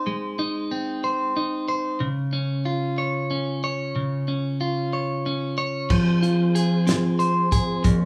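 A clean, picked electric guitar sits up front and carries this short cut from a six-eight pop ballad on its own for the first 5.9 seconds, its compressed tone warm as it moves from Ab to Db. The mood is aching and dramatic, with an unhurried, straight feel in 6/8. At 5.9 seconds the music shifts to Fm and a damped 70s drum kit arrives, dry and up front, with a fat snare, a tight kick, hi-hat and a dark crash cymbal whose top end is rolled off. A percussive tonewheel organ enters at the same moment, holding sustained chords low in the mix, its mellow, lightly overdriven voice coloured by chorus vibrato and a fast-spinning rotary speaker. The band sounds as if playing live together in one large studio room, with a moderate reverb around them, and the piece breaks off at 8.1 seconds.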